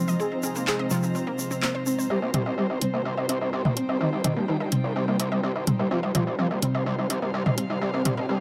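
This dark, hypnotic melodic techno excerpt opens on a bold, nasal analog synth brass melody with chorus and analog delay, over a very quiet sweeping resonant pad, a round background analog pluck arpeggio, punchy synth brass stabs, a distant, reedy chamber string section and a grainy tube shaker, as filter sweeps move through the brass and pad over an Fm/C chord. An up-front, layered deep house drum kit with handclaps, hi-hat and toms comes in at 0.7 seconds, and at 2.1 seconds a gritty, aggressive distorted synth bass joins as the harmony settles on C minor and a build-up begins, with filter sweeps now on the arpeggio, stabs and brass. A tense, string-like drone with phaser slips in at 3.3 seconds beneath an echo-heavy mix bathed in moderate spring reverb.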